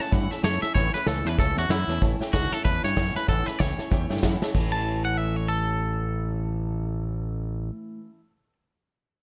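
Rockabilly with a swung, rollicking and rowdy feel, this short cut from a longer piece opens directly on an A chord. A twangy electric guitar carries the melody up front, clean and picked through a digital delay, while a growling fingered electric bass sits equally forward with a bright, overdriven, amped edge. A vintage brush drum kit, dark and smooth with a rolled-off top and a tight kick, drives the swing from a studio room until a drum fill at 4.4 seconds, and it stops at 4.6 seconds. Further back, a picked steel-string acoustic guitar adds full-bodied jumbo tone, and a detuned, jangly honky-tonk upright piano supplies accompaniment in its upper register. A light reverb gives the group a touch of space.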